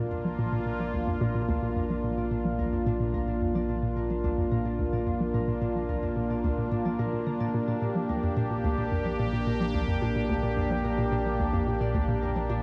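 This ambient, sequencer-driven space music runs at 109 BPM in a straight 4/4, and its mood is cosmic and expansive, resting on a Bb chord through the whole 12.6-second cut from a longer piece. Up front, a sweeping resonant pad holds sustained chords with an evolving, detuned sawtooth tone, slow attack, long release and chorus. Beneath it, a hollow square-wave pluck bounces through a low riff, its fast attack and short decay edged with a noise layer, chorus and tape echo, while a filter sweep moves through the synth arpeggio sound. A round analog bass anchors everything on a deep, dark Bb1. In the background, a fingerpicked Celtic harp rings out arpeggios through tape echo and fades in across the full length. The mix is dreamy and soaked in a cathedral reverb.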